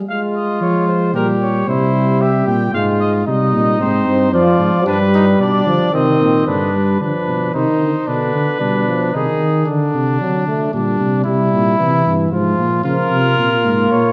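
A mellow, smooth-topped trombone opens this serious, contemplative classical canzona for brass ensemble in 3/4 at 113 BPM, joined almost at once by two trumpets and then, at 0.6 seconds, by an up-front tuba bass with light vibrato. The clear, distant trumpet carries the imitative melody while a close-miked, warm second trumpet with gentle vibrato plays the inner line in front of it. The lead trumpet drops out at 9.7 seconds and returns at 12.8 seconds, and the whole excerpt sits in a roomy recital-hall reverb, cut from a longer piece.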